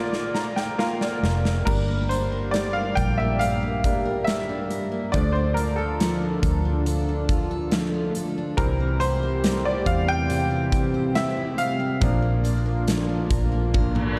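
A brilliant, woody, slightly detuned upright piano sits up front in this melancholic, emotional pop ballad at 70 BPM, opening with a fill over Bb before taking a solo from 1.7 seconds as the chords move through Gm, Dm, C and back to Bb. A round, foam-muted electric bass and a huge arena drum kit with a punchy kick and bright cymbals carry it from the opening, while a shimmering, chorused pulse-width pad and a full-bodied picked steel-string acoustic guitar playing arpeggios in the background join at 1.7 seconds. A drum fill from 13.7 seconds and an electronic reverse cymbal at 13.9 seconds close this excerpt from a longer piece, set in a dark, warm production with light studio reverb.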